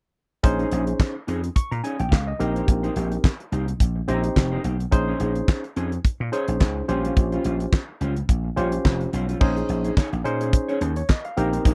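Danceable and funky, this short cut of early-eighties boogie funk in Bb dorian moves at 107 BPM with a light 16th-note swing, as a fat-snared, tight-kicked 70s drum kit with handclaps, hi-hat and crash sits up front beside a punchy, amped slap bass, while a barky tine electric piano, lightly overdriven through a combo amp, comps over Bbm11 and Cm7/Bb changes and a dark, clean, fingered electric guitar riff shimmers in lush chorus, all captured in a dry, close 1970s-style studio sound before a brief new section arrives at 9.4 seconds.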